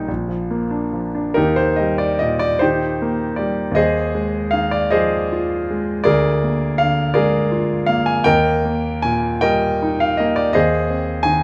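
A clear, smooth concert grand piano sits up front as the sole voice in this passionate, lyrical romantic character piece, its deep bass and vintage tone spanning Bb1 to Bb5. Moving in a flexible, rubato 6/8, the piano opens on a brief Bb before a new section begins at 1.4 seconds, circling through Eb, Fm7/Eb and Bb7/D and back again. Close, detailed miking is set in a moderate recital-hall reverb, and this short excerpt is cut from a longer piece.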